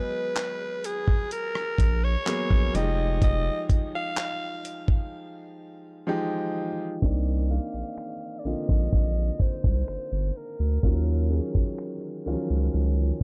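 Longing and moody, this contemporary R&B excerpt sets a raspy, edgy alto saxophone solo with digital delay over an intimate baby grand piano, whose action noise and long sustain ring beneath minor ninth chords. A gritty, compressed sampler-style kit of finger snaps, handclaps, hi-hat, rim click and a thumpy kick joins at 0.4 seconds, and a deep, saturated sine sub bass follows at 1.8 seconds, both up front in a dark, small-room mix. After a break at 5.1 seconds, a filter sweep carries the second section through to the end.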